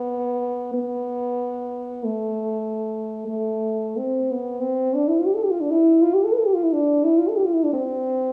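A lone French horn sounds up front from the opening second to 8.3 s, its dark tone and smooth top carrying a lonely, yearning classical line in A minor between A3 and B4. The brief solo passage moves in a free, rubato 3/4 at roughly 39-60 BPM, shifting into a new section at 4.6 s. A recital-hall reverb lingers around the horn, set within a small room's ambience.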